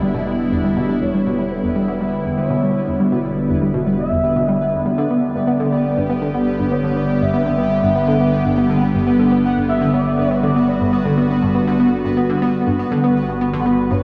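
A swirling, phased analog pad sits up front in this luminous, expansive ambient piece, its detuned sawtooth chords moving from Em7 to G at 5.0 seconds over a deep sine sub bass, while a bright analog pluck riff with chorus, analog delay and a filter sweep runs beneath, a pulsing gated texture glimmers in the background, and a smooth, expressive synth lead with vibrato enters at 1.0 seconds, the mix soaked in dreamy cathedral reverb.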